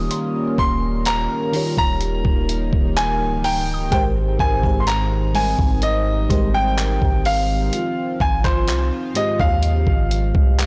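Moody and sensual, this slow contemporary R&B excerpt at 63 BPM moves through Eb7, Abmaj7 and Fm7/Ab, with a clear, up-front concert grand piano carrying the melody through a touch of delay over a lush, dreamy FM electric piano with chorus and a shimmering, dark pulse-width pad holding sustained chords. A deep, long 808-style bass anchors the low end, and a gritty, tape-warm sampler-style drum kit with a thumpy kick, hi-hat, handclaps and soft clipping on the snare sits up front, while a woody, round mallet-like synth pluck glints in the background with chorus and delay until 9.6 seconds. The whole recording has a blown-out, overdriven character set in digital ambience.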